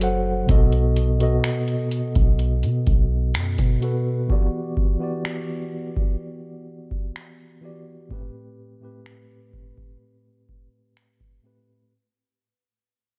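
A booming analog drum machine sits up front in this late-night, sensual contemporary R&B piece at 63 BPM, its deep kick, metallic hi-hat and finger snaps carrying the sound of a large room. A mellow, clean tine electric piano, also up front and heard through its built-in speakers, moves through B7, Em7 and Am7, while a boomy 808-style sine bass with a noise layer and a fast attack that decays drops out at 4.3 seconds. The mix carries little reverb and fades out across its full 11.9 seconds.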